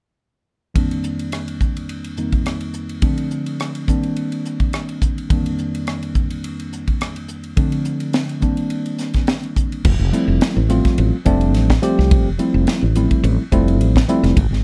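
Soaring and funky, this short slice of electric jazz fusion moves at 106 BPM in 4/4 with a light sixteenth-note swing, cut from a longer piece. A worn, slightly out-of-tune tine electric piano played through a combo amp carries the harmony from the start, cycling through F13sus4, Dm7 and Cm9/Eb in F mixolydian. A crisp, airy studio drum kit enters at 0.8 seconds, with a high-tuned snare, punchy kick, hi-hat, ride, crash and rim clicks sitting up front. At 9.8 seconds the music settles on Fmaj9 in F major, and a growly, round fretless bass with a woody, hollow-body tone joins, placed directly and prominently in the mix. The production is dark and warm, with light reverb.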